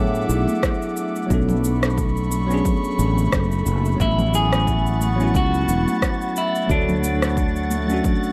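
Blissful and smooth, this sunset chillout excerpt with a swung 16th-note feel opens on a bell-like tine electric piano with tape echo, a breathy pad with chorus, and a growly, up-front fretless bass, over a punchy electronic kick, an electronic cabasa and rim click, and very quiet, soft-handed congas. An electronic swell sits in the background at 3.2 seconds. At 4.0 seconds a clean, picked semi-hollow electric guitar takes the melody through analog delay, joined at 4.5 seconds by a dark, wind-like tuned noise texture, all in an echo-heavy mix with light digital ambience.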